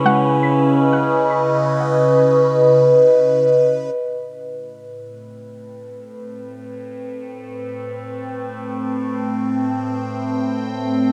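An evolving, bright wavetable pad sits up front, sustaining morphing chords through a phaser and its own reverb in this reflective, spacious ambient passage in free time, cut from a longer piece. A soft, round pluck with chorus, tape echo and cassette colour plays dark arpeggios in the background until 2.9 seconds, over C#m7 harmony. At 3.9 seconds the music shifts to Am7 as the pad fades in, all set in a wet spring reverb and an echo-heavy, cassette-tinged mix.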